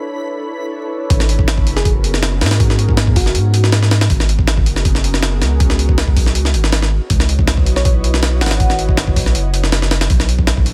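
Up front, a gritty, pitched-up jungle sampler kit drives this dark, atmospheric drum and bass cut at 160 BPM in G# minor, its thumpy kick, medium-tuned snare and hi-hat compressed with a tape-warm edge. The kit and a deep, thick saturated sub bass arrive together at the drop at 1.1 s, after an opening where an ethereal pad and a reversed, swelling granular texture in the background set a dreamy scene. The pad holds sustained chords throughout with a slow attack and long release, its detuned unison voices blurred by ensemble chorus, reverb and vintage 12-bit sampler grit. Set back in the mix, a bell-like FM electric piano adds sparkling, warbling melodic phrases, including one from 7.8 s, its decaying notes carried on chorus and dub echo. The chords move from Bm11 to G#m11, C#m11 and back to Bm11, all within a dense, heavily limited master flecked with vinyl crackle and digital ambience.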